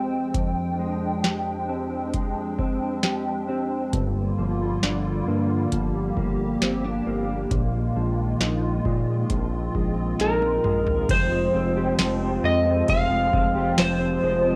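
Recorded at home on cassette and bathed in wet studio reverb, this hazy, melancholic dream pop fragment at 67 BPM in F dorian opens with a hollow, flute-like pad holding sustained chords and a mellow, clean electric guitar playing arpeggios with analog delay, both colored by ensemble chorus and tape, over an up-front booming analog drum machine with a deep kick and metallic hats, while a round, dark analog bass with transformer saturation joins at 3.9 seconds and a slightly broken-up slide guitar carries the melody from 10.2 seconds as a drum fill leads into the return of the opening chord at 11.1 seconds.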